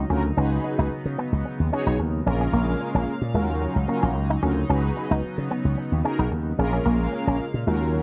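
Danceable and late-night, this straight 111 BPM funk excerpt sets a punchy, up-front slap bass with an envelope filter under a twangy, clean guitar riff run through an envelope filter and analog chorus, while mellow, brassy synth brass with chorus and phaser fills in accompaniment and a shimmering, retro pulse-width pad holds sustained chords moving through Db9sus4, Bbm7 and Ebm9, all captured in a dry, close 1970s-style studio sound.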